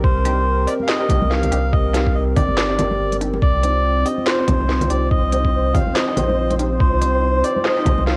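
Heavy and dark, this deep dubstep excerpt in C minor moves at 142 BPM with a swung half-time feel, as a reedy, breathy melodica carries the tune up front through dub echo over a moody, wave-folded analog pad with chorus, a round, soft sub bass, a muffled, thumpy kick drum and a garage kit with a cracking snare and crisp hats on cassette tape, while muted, detuned dub chord stabs with phaser, soft-handed congas and, from 4.1 seconds, a flickering, grainy texture sit in the background of a home cassette recording with light reverb.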